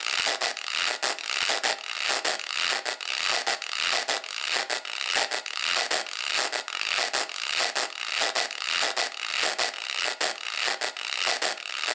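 A straight, danceable 4/4 pulse drives this sunny Latin fragment, cut from a longer piece, where a raspy acoustic guiro sits close, dry and up front from 0.3 seconds, set in a moderate studio reverb as the music moves from its opening passage into a new section at 4.2 seconds.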